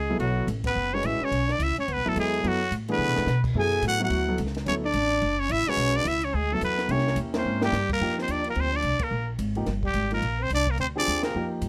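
A swung 4/4 pulse at 216 BPM drives this brisk modal jazz excerpt, which moves from B dorian into F dorian at 8.0 seconds and carries a spiritual, hypnotic mood. Up front, a trumpet with a straight mute states the melody in a nasal, raspy, growling voice with light vibrato and scooped notes, while a trombone plays a second line beneath it, its tone warm and present with vibrato and its own scooped notes. A woody, thumpy upright bass played pizzicato on gut strings sits prominently in the mix, and a warm grand piano supplies accompaniment. A compact cocktail drum kit with a high-tuned snare, punchy kick, ride, hi-hat and crash stays in the background with a dark, rolled-off top, adding fills and joining the band on accents. The harmony shifts from Bm11 through C7b9 to F13sus4, and the dry, closely miked sound brings out fine detail in every instrument.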